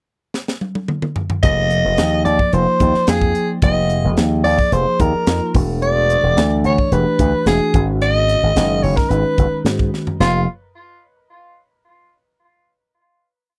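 The growling soprano saxophone leads this short, complete electric jazz fusion piece, its raspy, gritty tone carrying vibrato and scooped notes as it states a motif-based melody built in period phrases from 1.4 s. The mood is driving and nocturnal, set at 109 BPM in a straight 4/4. A crisp fusion drum kit, with a high-tuned snare and tight kick, opens with a fill before the band enters, lays down a funk groove, and marks the close with another fill at 9.9 s. The slap bass runs through an envelope filter for a bright, punchy syncopated riff, while a mellow, reedy electric piano with a phaser adds syncopated chord stabs in quartal voicings. The harmony moves from Fm11 to Em11 and Abm7 before settling on a final F9sus4 chord at 10.2 s, all captured in a dry, close 1970s-style studio sound.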